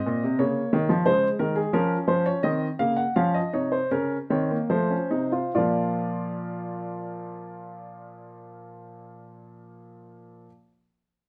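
In a straight triple metre that slows from 0.1 to 5.5 seconds, this contemplative, solemn fragment of a baroque-style three-part classical fugue is played by a solo baby grand piano whose warm, open tone and long sustain sit up front in light reverb as the harmony moves toward a Bb chord and a new section begins at 5.5 seconds.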